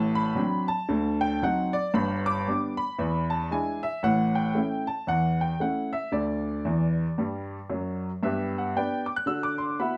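A swing feel on the eighths in 4/4 at 115 BPM carries this swinging, exuberant stride piano excerpt in G major, cut from a longer piece. A lone upright piano, woody and slightly detuned with long sustain, sits up front across a range from G1 to F#6, moving through dominant-seventh changes such as D7b9, E7 and A7 and breaking into a fill at 6.6 s before a new passage opens at 8.2 s. A small, wet room reverb and a dark, warm production give the solo a warm glow.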